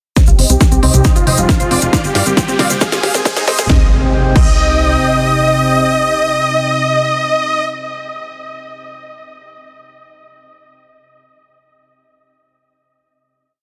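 Driving, soaring uplifting trance in C minor at 136 BPM opens at 0.2 s with an overdriven, up-front four-on-the-floor electronic kick, a techno kit of cracking snare, smooth hats, toms and crash, grainy hand-played egg shaker sixteenths, a round analog pluck arpeggio sitting in the background and a lush, warbling unison pad, with a tight rolling sequencer bass joining at 0.3 s, while a huge detuned supersaw riff in thirds and sixths builds under a filter sweep and a riser and impact join at 1.7 s, before the kick and kit stop at 4.5 s and the piece settles onto a sustained final C minor chord inside a dense, heavily limited master with light reverb.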